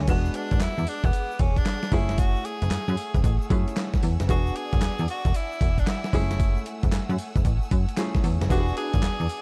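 Dark, warm production with studio reverb frames this punchy, confident R&B new jack swing excerpt, where a gritty, compressed sampler-style drum kit with thumpy kick, handclaps and tambourine and a snappy, metallic slap-like FM bass sit up front beneath an edgy, forceful tenor saxophone lead with scooped notes, while a clear grand piano and a very quiet, grainy egg shaker add detail, and lush bowed strings and a brief jazz-style horn stab at 8.5 s sit in the background over swung E9 and F#m9 chords.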